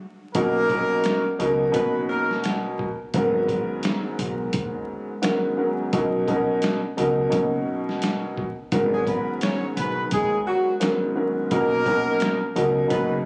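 Recorded on a phone in the room, this reflective, gritty boom-bap hip-hop excerpt sits in club reverb with vinyl crackle and compression, swinging over Bmaj9 and G#m11 chords. A woody upright piano with long sustain plays accompaniment up front through cassette-tape coloring, while a dark pizzicato upright bass on gut strings and a pitched-down sampler-style drum kit, with a thumpy kick, medium-tuned snare and hi-hat, carry the groove. A mellow, tight horn section with light vibrato and octave doubling adds soft-attack stabs with slapback echo from 0.3 to 2.4 seconds and again from 8.9 seconds.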